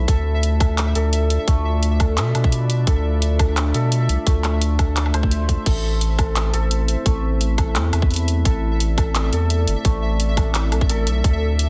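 Half-time drum and bass with a dark, spacious mood, built on a tight electronic kick pushed up front and a layered kit of crash, handclaps, hi-hat and woodblock, all in a small room, beneath a thick, saturated sub bass that sits just as forward. A mellow santur plays ringing, shimmering arpeggios through tape echo over a moody analog pad of sustained chords treated with chorus, phaser and sidechain pumping, while a bright, detuned, tempo-synced gated texture pulses softly in the background. An electronic swell appears briefly at 5.1 seconds just before the harmony moves from D minor to A minor, all within a dense, heavily limited modern master with light digital ambience.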